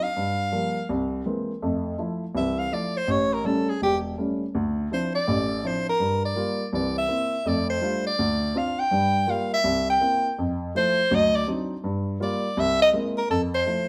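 A clear soprano saxophone with light vibrato and a soft attack sings the melody over an intimate baby grand piano, whose audible action noise and short sustain sit up front in a relaxed, swinging jazz excerpt in F major at 164 BPM, with the saxophone taking a solo from 1.6 to 13.3 seconds as both players share one room bathed in wet studio reverb.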